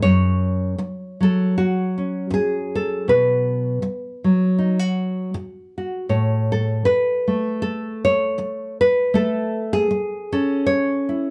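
A nylon-string guitar, fingerpicked up front with a full-bodied, deep classical tone, carries this melancholic, intimate solo folk excerpt at 79 BPM in 4/4 with a light swing, moving through F#5, B5 and A chords over 11.3 seconds in a small room's moderate reverb.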